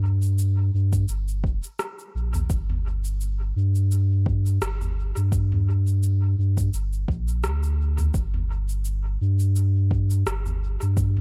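A round, mellow sub bass anchors this meditative ambient dub piece. Its sine-like tone sits up front with a fast attack, long sustain and a touch of tube saturation, moving between F1 and G2 from the very start at 0.0 s. An electronic drum kit with an organic feel enters at 0.2 s, sitting much lower in the mix. Its cabasa, rim click and toms trail dub echo and carry a tape-warm, produced character, as if re-recorded in a small room. A soft electronic kick joins at 0.9 s, placed up front and sharing that same small-room colour. The groove sits in 4/4 with a gentle swing on the sixteenths, and the dry sound of this short cut from a longer piece leaves the sparse arrangement feeling close and deep.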